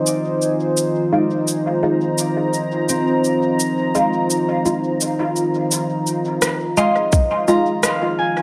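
A hazy echo-chamber reverb with a 2.1-second tail wraps this spacious ambient dub fragment at 85 BPM in F dorian, resting on Fm7 with a lightly swung 4/4 feel. A deep, dark sawtooth pad with a sub octave and detuned chorus holds sustained chords up front, while a ringing, fingerpicked concert harp plays arpeggios through dub echo. A muted, mellow chord stab enters at 1.1 s with phaser, ensemble chorus and echo, and both harp and stab carry a filter sweep until 5.7 s; tape-toned electronic cabasa and rim click, re-recorded in a large room, keep time throughout, and a tight electronic kick sounds at 7.1 s.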